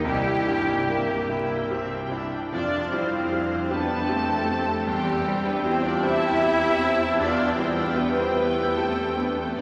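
A rubato 6/8 at 48-52 BPM, counted in dotted quarters, carries this tender, uplifting orchestral film-score excerpt, where a lush, distant violin section sings the melody over a clearer studio violin section, an airy flute and a very quiet clarinet, with a dark cor anglais joining at 2.5 s. A bright grand piano with deep bass sits in the background beside a very quiet viola section, while a roomy, tight French horn section holds dark sustained chords and intense cellos with expressive double basses anchor the low end. The sound is bathed in a wet church reverb with vinyl crackle, moving through C7, Fsus2, C/E and Em.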